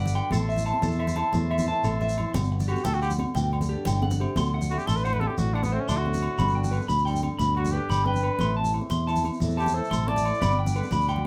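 Joyful and sunny, this highlife guitar band groove rolls along in 12/8 at 119 BPM in G major, with a round, punchy fingered electric bass up front and a bright, twangy electric guitar picking arpeggios through a small old amp, slightly broken-up. A fingerpicked flamenco guitar adds acoustic accompaniment beneath ringing high-tuned congas, a grainy shekere and agogo bells, while a buzzy vintage combo organ holds chords until 2.3 s and returns at 10.4 s. At 2.7 s a breathy, jazz-style trumpet takes the solo with vibrato, sitting present in a lively room that catches the whole band playing live together in this cut from a longer piece.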